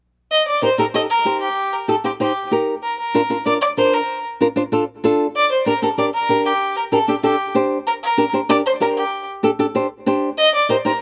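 Fiery and passionate, this short Latin cut from a longer piece sets a single bowed fiddle with a reedy, gut-string tone and a slapback echo out front, carrying the melody from 0.3 seconds. A fingerpicked acoustic flamenco guitar joins at 0.6 seconds with a warm accompaniment, moving through Eb, Bb and G minor before returning to Eb at 10.4 seconds. The outdoor recording is dry, with a softened top end.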